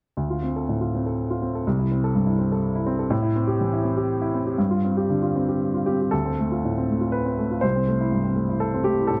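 A wet stone room surrounds this short fragment, its reverb lingering for about 1.3 seconds around a single instrument. Neoclassical minimalist piano in C major, it moves at 121 BPM in 3/4 with a rubato feel and a tender, hopeful mood. A baby grand piano plays solo from 0.2 to 9.2 seconds, sitting up front and present, its worn, warm tone ringing with long sustain across a range from C2 to C5. The harmony drifts through Dm7, C6, Am7 and G7sus4 in the opening passage, then a second passage beginning at 6.1 seconds returns to Dm7 and C6. Cut from a longer piece, it ends while the music is still unfolding.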